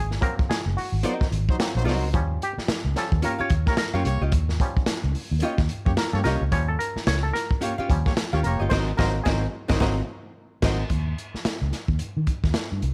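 A bright, twangy muted clav leads this strutting funk cut at 110 BPM in Eb mixolydian, its auto-wah stabs soloing from the start over a round, punchy, foam-muted electric bass and a gritty, saturated breakbeat kit with dark cymbals and a tight kick, both set up front with a swung sixteenth feel. From 1.0 s a clear horn section with light vibrato and tube saturation plays a second line, while a clean, hollow-body archtop guitar adds compressed, picked accompaniment over Ab9 and Eb9 chords, and the band hits an accent at 8.7 s. The clav stops at 10.1 s, and the bass and drums carry on to the end of the excerpt in a studio-reverb space.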